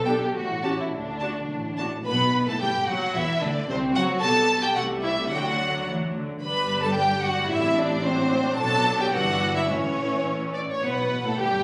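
In a straight, quick two-four, this graceful, spirited classical-period movement for string orchestra, cut from a longer piece, sets an expressive, close chamber violin section on the melody up front beside a lush, smooth-topped symphonic violin section on the second line, while a distant chamber viola section fills in the accompaniment and a studio cello section with portamento joins a rich symphonic double bass section underneath, all caught on a phone in a reverberant recital hall.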